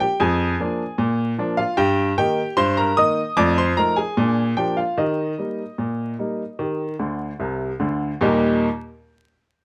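Light reverb and a layer of vinyl crackle frame this short, jaunty ragtime fragment, cut from a longer piece, in Eb major at 75 BPM in a straight 2/4, tuned to A4 = 439 Hz. A solo upright piano, woody and intimate with audible action noise, sits up front from 0.0 to 8.7 seconds, ranging from C2 to Eb6 through a cheerful progression of Bb7/F, Eb/G, F7, Bb7 and Eb. A piano fill from 7.0 seconds leads into a new section at 8.2 seconds.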